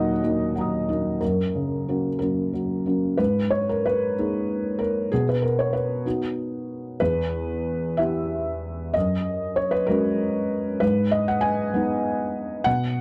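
Wistful and reflective, this 13-second excerpt of neoclassical minimalist piano drifts in a rubato 6/8 at roughly 60-66 BPM, counted in dotted quarters, in G# minor. A felt-muted upright piano plays solo across a span from D#2 to D#6, its soft, mellow tone sitting up front and intimate, with audible action noise lending a natural presence. The harmony moves from D#m and F# to G#madd9 at 3.2 seconds, then through B, Em and F#add9 before settling on G#m at 10.8 seconds, captured in a dry, close 1970s-style studio sound with light reverb.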